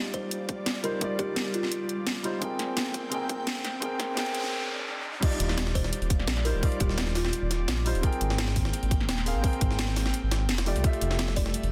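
Straight 4/4 liquid drum and bass at 171 BPM rides on an up-front, overdriven layered kit of tight electronic kick, cracking snare and bright hats driving this lush excerpt in Eb major, over a deep, rumbling detuned saw bass, a dark, mellow grand piano carrying vintage 12-bit sampler grit and tape echo, an airy, breathy pad pumping in the background with chorus and phaser, and a woody, plucked kalimba melody with tape echo, while a very quiet riser and noise sweep build toward the drop at 5.2 s, where a gritty, pitched-up jungle sampler-style kit with a high-tuned snare joins behind chords moving from Ebmaj9 to Abmaj9 and on to Fmaj9.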